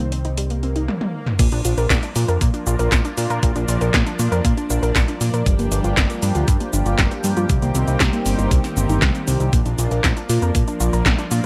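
A straight 4/4 synthwave groove at 118 BPM in Bb major carries this romantic, dreamy excerpt, with 80s electronic pad drums featuring metallic hats, handclaps, shaker, crash, and gated reverb on the snare and toms, joined at 1.4 seconds by a thumpy, sampler-style electronic kick after a brief drum fill and an electronic swell. A fat, thick analog bass sits up front beneath a silky, detuned string pad with ensemble chorus and sidechain pumping, whose opening filter sweep gives way to chords moving from Cm7 through Bb, Gm7 and back. Over it, a warbling, dusty pluck plays mellow lo-fi arpeggios with 12-bit sampler grit, chorus and delay, all in a dry mix with little reverb.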